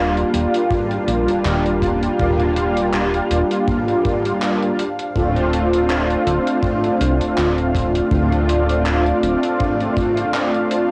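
Recorded at home onto cassette with light digital ambience, this faded, dreamy vaporwave fragment from a longer piece drifts on a gently swung 4/4 feel. Up front, a dark, brassy synth brass with vibrato carries the accompaniment through tape and analog delay, while a lush, thick unison pad with 12-bit sampler grit holds sustained chords in the background, and a glossy, detuned synth bass runs beneath until 9.4 s. A gated 80s drum machine adds handclaps and hi-hat in gated reverb, joined by a punchy kick drum with a bright stone-room sound, as the harmony moves from Ebmaj9 to Dm7 at 4.8 s.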